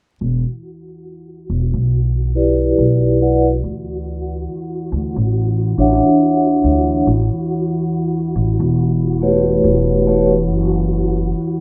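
Swung sixteenths at a slow 70 BPM in 4/4 carry this dark, brooding trip hop excerpt in E dorian: a growly, woody pizzicato upright bass sits up front beneath a detuned, nasal analog pad with 12-bit sampler grit and a flickering granular texture, while a mellow vibraphone played with soft mallets enters at 2.4 s through tape echo and tremolo, both it and the pad moving under filter sweeps, over a background tube shaker and group handclap, inside a rough home-demo mix with vinyl crackle as the chords pass from Em7 through Dmaj9 and A9 to F#7(no3).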